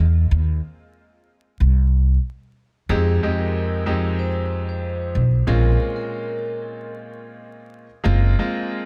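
A woody, pizzicato upright bass with steel strings sits up front in this tough, dark boom-bap hip-hop cut, taken from a longer piece and set in 4/4 with a light swing on the sixteenths. A smooth, vintage grand piano, also up front, carries the accompaniment through a cassette-tape coloring, and the opening moments give way to a break where the chords are held back. At 2.9 seconds a mellow vibraphone played with soft mallets enters with the melody, its metallic ring shaped by a slow motor vibrato and a delay, sitting mid-forward before dropping out at 6.9 seconds. The harmony moves through lush minor ninth chords before arriving on a major ninth sharp eleven voicing near the end. Small room ambience and vinyl crackle surround the track with a dusty haze.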